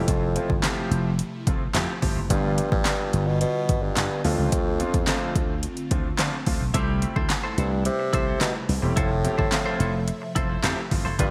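Bright, 1980s-style digital production with light reverb and a digital ambience frames this carefree, summery dance-pop excerpt at 108 BPM in straight 4/4. Up front, a warm bassoon carries the melody in a classical style, with light vibrato and a touch of delay. Beneath it, a growly slap bass through an envelope filter pumps with the sidechain. Driving the groove is an overdriven deep house kit of punchy kick, fat snare, metallic hats and handclaps, treated with gated reverb. An intimate concert grand piano with audible action noise and long sustain adds accompaniment through analog chorus, while an airy, breathy pad with a detuned sawtooth-and-triangle tone, noise layer and moving notch holds soft sustained chords in the background, and both of these parts also pump with the sidechain. The harmony moves from Fmaj7 through G7 and Dm7 to C6 and back to Fmaj7, and at 6.7 seconds a twangy, clean electric guitar, recorded direct and compressed, joins with a picked riff under subtle chorus.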